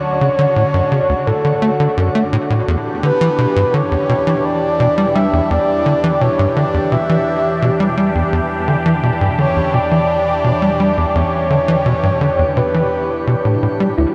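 A tight, punchy sequencer bass drives this hypnotic, expansive space-music excerpt at 85 BPM in E dorian, its saturated sawtooth riff roughened by 12-bit sampler grit and lush chorus and echoed through analog delay. Above it, a breathy, flute-like synth lead sings a soft, vibrato-tinged melody with shimmer reverb, while a swirling, detuned phased pad holds bright chords that move from Dmaj7 to Em7 at 2.7 seconds. A mellow, warbling analog drone fades in underneath, and a round, tine-like thumb-piano pluck surfaces only at 14.0 seconds, all set in a vast, echoing space.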